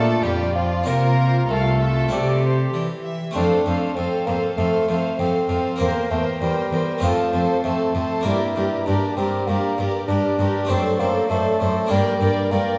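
Brilliant and festive, this baroque-style concerto movement with solo episodes moves in a steady, even four, cut from a longer piece and heard in a reverberant recital hall of a church or concert hall. A mellow bassoon carries the solo melody in its middle register, standing out prominently alongside a period-style violin section whose dark, distant line sits high and in the background. A second violin section adds a rich, smooth-topped countermelody with light vibrato, while a shadowy viola section with gut-string tone fills in the accompaniment. An airy, full-bodied Italian-style harpsichord, plucked across two sets of strings, spans a broad range beneath them, and a close, up-front cello section anchors the bass until 12.6 s. The harmony passes from Bb through F and C before turning toward Gm with a D7/F# near the end.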